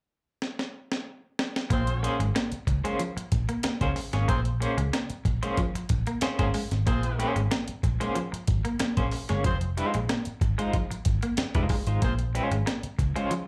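This sly, funky excerpt in Bb minor opens with a sampler-style breakbeat kit playing a drum fill from 0.4 seconds, its gritty, pitched-up sound carrying a thumpy kick, a medium-tuned snare and hi-hat, compressed and up front. At 1.7 seconds the groove settles in at 93 BPM in a straight 4/4, as a dark, round, foam-muted picked bass, a twangy guitar at the edge of break-up playing a riff with slapback echo, and a tight horn section with light vibrato and octave doubling all enter together. Just after, at 2.0 seconds, a bright, clean semi-hollow guitar joins up front with accompaniment treated with tremolo and slapback echo, while the horns carry a smooth-topped second line. The harmony sits on Bbm9, moves to Fm7 at 9.4 seconds and returns to Bbm9 near the end. The whole thing sounds like a live gig heard through a venue's PA, with light club reverb around the band.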